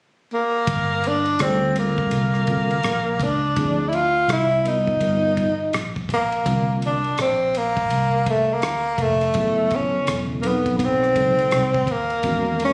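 A breathy, whispered tenor saxophone carries an intimate, scooped melody with vibrato from 0.3 seconds in this nocturnal, swung jazz-hop excerpt, joined at 0.7 seconds by a round, foam-muted fingered electric bass and a cloth-damped, thuddy drum kit with dark cymbals and a tight kick, while a clean, mellow tine electric piano sounding through its built-in speakers adds chords from 1.4 seconds, the whole mix framed by vinyl crackle and the roomy sound of a phone recording.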